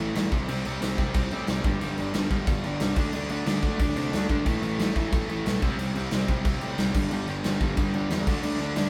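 Punk rock at 181 BPM, urgent and aggressive, with an up-front warm overdriven guitar and a brighter distorted guitar behind it picking riffs over C5, G5, D5 and A5 power chords, a round, punchy fuzz bass underneath, and a big acoustic drum kit with a punchy kick, medium-tuned snare and bright crash cymbals, all played live in one room with moderate studio reverb in this short cut from a longer piece.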